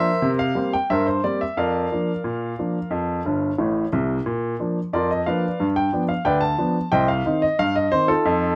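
A straight 2/4 pulse at 90 BPM carries this jaunty, lively ragtime fragment in Bb major, where a solo upright piano, woody and up front with audible action noise, ranges from G1 to A5, drops in a fill from 3.2 to 4.2 seconds and moves through Bb/F, F, Bb, G7 and Cm under light reverb in a dark production.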